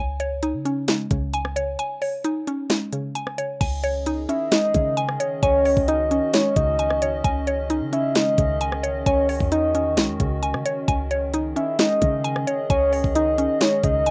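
A woody, mallet-like synth pluck plays chorused, delayed arpeggios from the opening of this eerie, melancholic trap piece at 132 BPM in a half-time feel, over a clean, boomy 808-style bass and an up-front trap kit with a knocking kick, sharp snare, crisp hats, rim clicks and crashes. After a break at 1.8 seconds, a warbling, lo-fi tape-like pad brings in dark sustained chords at 3.9 seconds, and a soft, octave-layered synth lead with vibrato, plate reverb and delay adds a second line at 4.3 seconds. It has the rough sound of a home demo in a small room, dull at the top, and opens on a C#sus2 chord.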